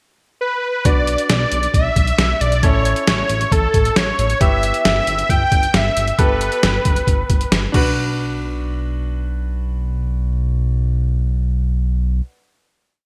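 Synth-pop with a cool, nocturnal mood, where a thick, detuned unison lead with vibrato and delay sings a motif-based melody over held close-voiced chords on a bright concert grand piano, a glossy, pulsing eighth-note synth bass with chorus, and a gritty, pitched-down boom bap sampler-style drum kit with gated reverb that drives a straight drum-machine beat until 7.8 s, all set in bright 1980s-style digital production before piano and bass ring out on a final hit from 8.0 s.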